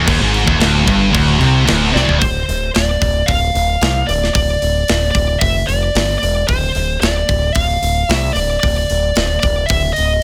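A bright, high-gain lead guitar carries the melody from 1.9 seconds, its distorted line touched with delay, in this relentless, epic heavy metal excerpt in D minor at 112 BPM. It opens over a low riff doubled by a bright high-gain guitar and a dark, sludgy overdriven guitar, both stopping at 2.2 seconds, while a growling overdriven electric bass and a tight, gritty, saturated drum kit with a rolled-off top drive the piece. A drum fill at 1.9 seconds leads into a section moving through Dm, Dmadd9/F and G5, all set in a light reverb.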